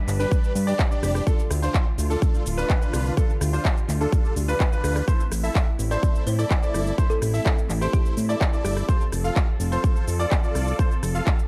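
A straight 4/4 groove at 126 BPM drives this powerful, euphoric festival progressive house passage in A minor, anchored by a punchy, overdriven kick up front and a crisp, overdriven dance kit of handclaps, hi-hat, rim click and shaker. A fat, saturated analog bass, a huge detuned supersaw riff and clear grand piano arpeggios pump with sidechain compression over a G, Dm, Am and F progression, with the riff and arpeggios trailing dub echo. Dark, distant bowed strings hold chords in the background, and from 5.9 to 8.9 seconds a woody kalimba melody drifts through in airy dub echo.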